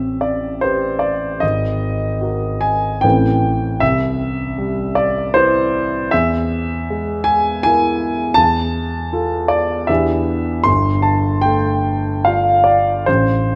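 A grand piano carries this hazy, dreamy fragment of impressionist classical music on its own, its warm tone sitting present and up front with a long sustain that lets each chord linger. Taken from a longer piece, the 13.6-second passage moves in 3/4 at around 77 BPM, though the beats are uneven and the pulse breathes freely with rubato. The harmony drifts through colourful chords, opening on Am9 and Absus2 before passing through Cmaj7, an E major chord at 6.1 seconds, Fmaj7/E and Em7, and coming to rest on an open Gsus2. The writing spans the keyboard from a deep G1 up to C6, giving the sound both a rich low foundation and a delicate upper shimmer. A moderate concert hall reverb wraps the instrument in a gentle, spacious glow, and the piano is tuned slightly high, with A4 at 441 Hz.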